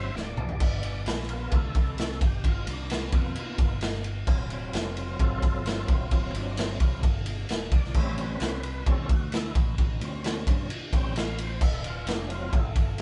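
A straight 4/4 groove at 131 BPM drives this raunchy blues rock and southern rock power-trio excerpt. The raw garage drum kit sits up front with a boomy kick, a medium-tuned snare and a saturated small-room pump, and it opens with a fill. A growling, bright fingered electric bass adds overdriven bite underneath, while a thick, percussive overdriven tonewheel organ takes the solo on sustained chords through a fast rotary speaker and chorus vibrato. The chords move from D7 through G7#9, D7#9 and A7#9, all under light live-room reverb.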